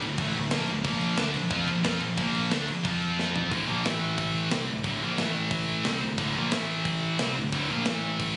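A fast, straight 4/4 drive at 180 BPM in D minor powers this dark, epic heavy metal excerpt, with a tight drum kit, its snare medium-tuned and its top rolled off, playing kick, snare, hi-hat, toms and crash, then closing the opening passage with a fill at 3.2 seconds. Two distorted, high-gain electric guitars play the riff, the scooped one bright and up front while the heavier one sits in the background, over a growling, overdriven picked bass. Around 3.5 seconds the harmony shifts from its broader Dm, Bb5 and F5 opening to a quick back-and-forth between Dm and A5, all captured in a small room on a phone with studio reverb and a dulled, capped top end.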